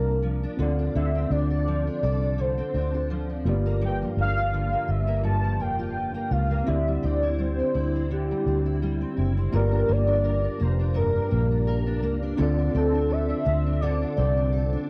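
A round, foam-muted electric bass sits up front beneath a velvety, detuned synth lead carrying the melody through analog chorus and tape echo, while a dark, full-bodied fingerpicked acoustic guitar with warbly pitch drift and a mellow, clean tine electric piano fill out this wistful, gently swung 84 BPM bedroom-pop excerpt in G dorian, its gritty cassette-tape sound touched by light reverb as the chords move from Bbmaj7 through Dm7, Gm7 and D9sus4 before a new section arrives at 9.5 seconds.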